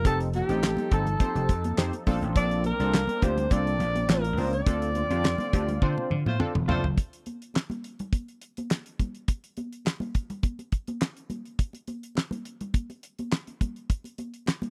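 This danceable, slick slice of early-eighties boogie funk opens at 104 BPM in a straight 4/4. A breathy, whispered alto saxophone with light vibrato and slapback echo carries the melody, over a punchy, detuned sawtooth polysynth comp with chorus and filter sweep and a very quiet, smooth analog pad. A growly, amped slap bass sits up front beside a damped 70s drum kit with a fat snare, tight kick, hi-hat, toms and handclaps, and soft-handed, high-tuned congas join at 0.3 seconds. The chords move from F7 to Bbmaj9 to Dm7, where a band accent arrives; a drum fill follows at 5.8 seconds, and a clear horn section adds a brief second line from 6.3 seconds. After 7.0 seconds the harmony drops away and only the drums and congas carry on until 14.7 seconds, all in a dry, close 1970s-style studio sound cut from a longer piece.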